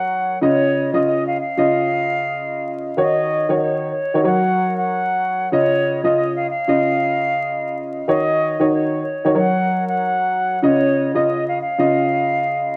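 Reflective and dark, this hip hop excerpt moves at 94 BPM in 4/4 with a swung sixteenth-note feel. A silver concert flute carries the melody from start to finish, its pure, straight tone and crisp attack sitting at a distance yet sounding expressive. A dark upright piano accompanies throughout in a mellow, woody voice, close and intimate, slightly detuned, with its action noise audible. The harmony circles through Dbadd9, Ebm7 and Gb, and the phrase repeats from 5.5 seconds. Light reverb and a small room ambience surround the pair, while worn cassette tape with warbly pitch drift and vinyl crackle lend a vintage haze.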